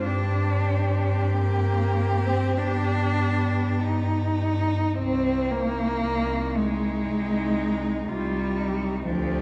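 Classical and elegiac, this melancholic excerpt for four bowed cellos unfolds in C minor at a rubato 47-62 BPM in 4/4, with a focused melody and an expressive second line sliding with portamento and soft attacks above a gliding, up-front accompaniment and a focused, up-front bass, every cello rich with vibrato, as the harmony rests on Gsus4, settles onto G and then turns to C minor at 5.0 seconds, all heard from further back in a reverberant recital hall.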